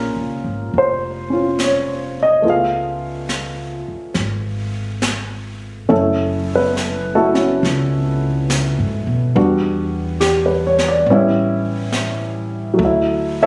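An intimate, natural-sounding baby grand piano sits up front with audible action noise and a short sustain, comping through a melancholic, wistful swung jazz ballad that moves from Bbm7 and Db7b13 into F#m7, Em9, A9 and Dadd9. A woody pizzicato upright bass with steel strings plays beneath from the start, and a brushed drum kit with a high-tuned snare and hi-hat joins at 0.7 s. The recording has light reverb and the feel of a phone recording in the room, in a passage cut from a longer piece.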